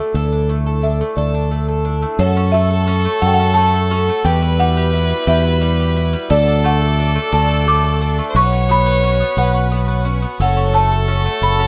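Warm and hopeful, this slow indie folk passage in 6/8 at 58 BPM, cut from a longer piece, sets a woody, dry marimba melody with slapback echo over a boxy, shimmering twelve-string guitar, mellow mandolin arpeggios and a round, up-front fingered electric bass, before a clear, focused fiddle with slapback echo and an earthy chamber string section holding sustained chords in the background join at 2.2 seconds, all moving through chords like Dsus2, F#m and Emadd9 in a rough home demo mix with light studio reverb.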